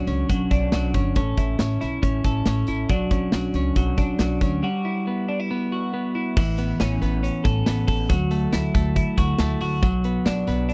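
A bright, twangy twelve-string electric guitar opens this breezy, youthful piece of jangly indie pop, its clean, picked, compressed arpeggios sitting up front over a woody, growly upright bass plucked on steel strings. A big rock drum kit enters at 0.1 seconds in a straight 4/4 at 138 BPM, with a boomy kick, a medium-tuned snare, hi-hat and crash cymbal placed forward in the studio room, while a jingly tambourine sits very quietly and close behind it. The harmony moves from Bmadd9 to A and back, then settles on Emadd9 for a break at 4.6 seconds. A new passage begins at 6.4 seconds, moving through Aadd9 and Dadd9 before landing on Bm. The recording is dry and close in a 1970s studio manner with little reverb, tuned slightly flat to A4 = 437 Hz, and the excerpt is cut from a longer piece.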